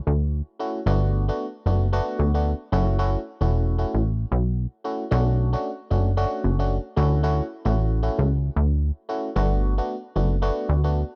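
A swung sixteenth-note afrobeats groove in 4/4 sets a sultry, hypnotic mood, as a punchy, wave-folded analog bass with a funky filter pluck holds the low end from 0.1 seconds and a biting, chorused FM electric piano with a percussive noise layer joins at 0.6 seconds over Dmaj7, Gmaj7, F#m7 and Bm7 chords, all captured dry with gritty transformer saturation in this short cut from a longer piece.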